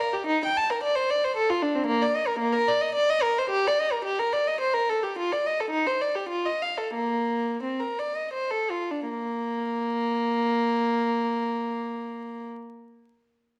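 A lone violin with a rich, reedy gut-string tone opens this radiant, dance-like baroque-style suite movement in a lilting triple metre, played close and up front in period style with a flexible rubato that slows between 4.3 and 9.1 seconds before a new section begins, all set in a moderate recital-hall reverb with a dark production and vinyl crackle.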